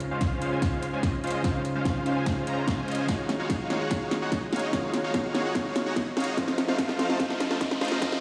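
Future bass at 146 BPM in a half-time feel, lush and dreamy, this build-up cut from a longer piece sets up-front supersaw chords, huge and detuned with 12-bit sampler grit, sidechain pumping, a low-pass filter and delay, over a bell-like tine electric piano that also pumps and echoes, while an overdriven pop kit with a fat snare and metallic hats is joined by a punchy electronic kick through a running drum fill and filter sweep, a very quiet riser entering at 5.2 seconds, as the chords move from Dbmaj7 through Ebm11 to F7 in a bare stone room with a long ambient reverb.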